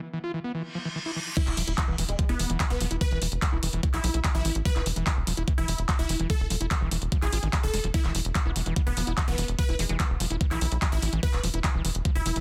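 An overdriven acid bass riff opens this alien, hypnotic psychedelic trance excerpt, squelchy and gritty with distortion, sidechain pumping and tape echo, before a reverse cymbal rises into an impact at 1.4 seconds where the drop lands with a knocking, overdriven kick up front, a layered techno kit of crash, handclaps and hi-hat, a tight, nasal sequencer bass and a bright detuned supersaw stab melody with phaser, joined shortly after by a juicy resonant blip pluck in the background, all dry and densely limited.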